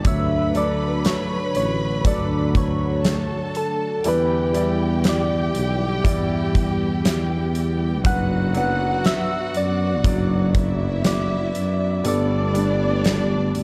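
Heartfelt and tender, this pop ballad moves at a slow 60 BPM in D major, drifting from Dmaj7 through Em7 and Bm/F# to Gadd9 across a 13.6-second stretch cut from a longer piece. A round, keys-like struck synth lead carries the melody with a chorus shimmer, while a lush bowed violin section adds an expressive second line and an intimate concert grand piano, its action noise audible, plays the accompaniment over a very quiet, detuned analog pad. Up front, a dark tuba with light vibrato takes the bass and a big-room acoustic drum kit with a fat snare and punchy kick drives the groove, all set in a studio reverb within a dark, warm production.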